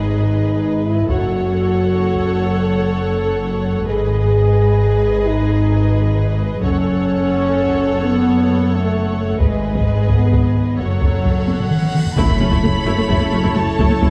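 Dark and dramatic, this excerpt from an epic orchestral film score moves at 87 BPM in a straight 12/8, set in F# dorian with chords shifting between G#m and F#m before landing on F#m7. Two lush violin sections carry the melody and a second line with smooth, even vibrato, while a viola section adds expressive accompaniment marked by portamento. A distant, roomy French horn section holds sustained chords over a bowed bass of rich, focused cellos in the background and distant double basses. A taiko ensemble played with heavy sticks, vintage and band-limited in tone, strikes briefly near 1.1 s and returns at 6.6 s, moving through a drum fill into a huge, dark cymbal swell and impact. At 12.2 s a very quiet trombone section, a mellow tuba and hard-mallet timpani join as the music enters a new section, all within a moderate scoring-stage reverb and a dark production.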